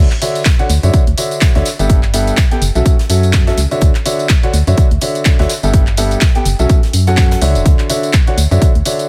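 An up-front, layered electronic kick drives this short, joyful and euphoric slice of piano house, entering at 0.5 seconds with a punchy, tape-warmed thump and a swung sixteenth-note feel. A clear, slightly boxy grand piano carries the riff from the very start, treated with tape echo and sidechain pumping that makes it breathe. Beneath it, an organ-like FM bass sits dark and hollow, its fast, percussive attack decaying quickly while the same pumping ducks it. An analog drum machine adds handclaps, hi-hat and tambourine, and a very quiet, airy brush kit with a medium-tuned snare and hi-hat brushes in a polished studio-room texture underneath. The harmony cycles through Dmaj9, G6/9 and F#m7 in a bright, uplifting loop, all set in a noticeable studio ambience, and the passage ends at 9.1 seconds as though cut from a longer track.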